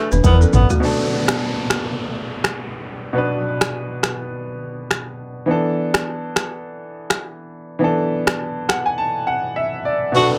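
A breathy tenor saxophone and a clear grand piano open this smooth, mellow afrobeats excerpt together, the whispered, jazz-style saxophone sitting in plate reverb and delay with scooped notes and vibrato. Almost at once a brief burst fills the space: a deep, sine-toned sub bass with octave sits up front, a woody, buzzing balafon with delay murmurs in the background, very quiet bongos add soft hand touches, and a deep house drum kit rolls through a fill. By 0.8 seconds most of these have dropped away, leaving the worn, natural-sounding piano to carry the chords under a tape-tinged kit of deep kick, finger snaps, rim click, shaker and toms, while an electronic downlifter drifts beneath. The drums stop at 8.8 seconds, opening a break in which the piano plays a fill alone. The saxophone returns briefly at 10.2 seconds as a second downlifter closes this intimate, lightly reverberant fragment.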